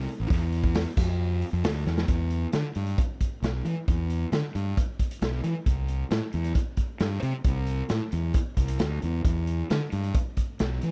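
Opening at 0.0 seconds with a growly, overdriven fingered electric bass up front, joined almost at once by a punchy, gritty garage drum kit of kick, snare, hi-hat and crash that plays a fill at 1.9 seconds before the next section at 2.1 seconds, this confident, sunny classic rock excerpt at 134 BPM in a straight 4/4 has a dry, close 1970s-style studio sound.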